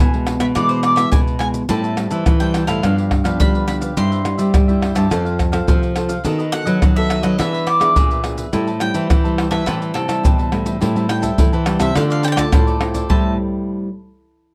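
Samba and choro with a yearning, nostalgic mood, led by a bright, double-strung bowl-back mandolin melody over a full-bodied, fingerpicked nylon-string guitar accompaniment with fresh strings and audible finger squeak. A second, smaller-sounding nylon-string guitar carries the bass line, while close, dry maracas, pandeiro, tamborim and a tight surdo sit up front, and a crisp, picked cavaquinho joins quietly at 1.7 seconds. Light reverb and a dark, warm production frame this short cut from a longer piece.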